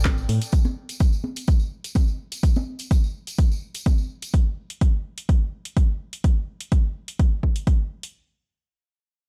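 Piano house at 126 BPM in straight 4/4, energetic and soulful, this is cut from a longer piece with a dark production. A punchy, up-front electronic kick and a dry analog drum machine playing handclaps and hi-hat are both overdriven and touched with studio reverb, while tambourine and congas recorded in a small room add acoustic colour until 4.3 s. A muted, veiled string section with vibrato and soft bowed attack sits in the background with sidechain pumping and is heard only in the first 0.5 s.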